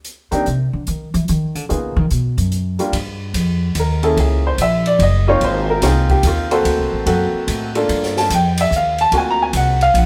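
Captured live in one stone-walled room with a moderate reverb, this smoky, swinging jazz piano trio excerpt moves at 145 BPM in 3/4 with a swung feel, in G minor and tuned slightly below standard pitch. A woody, pizzicato upright bass with steel strings sits up front and takes a brief solo until 2.9 seconds. A smooth, vintage grand piano then solos over chords moving from Gm7 through F#9 and Ab6 to an altered D7. An acoustic drum kit stays further back beneath them, with dark cymbals, a high-tuned snare, a boomy kick and hi-hat.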